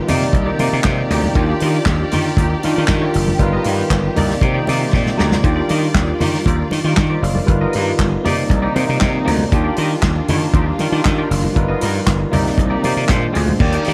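Disco in Eb major at 118 BPM, this joyful, celebratory cut from a longer piece moves in a straight 4/4 over a looping progression of Cm9, Ebmaj9 and G7alt chords, landing on Bb9 near the end. A gritty slap bass sits up front, overdriven and growly with a punchy attack, alongside a soul drum kit whose tight kick, medium-tuned snare, hi-hat, handclaps and crash have a mid-forward, rolled-off top, with a drum fill at 4.9 seconds. A bright, barky tine electric piano, lightly overdriven through a combo amp, carries the accompaniment and steps out with a short fill at 8.5 seconds. Behind it, a lush studio string section holds smooth, even chords with vibrato, while a clean, compressed, twangy electric guitar treated with ensemble chorus adds fingered accompaniment in the background. Very quiet congas with a thick skin and soft hands round out the groove, all set in a small room ambience.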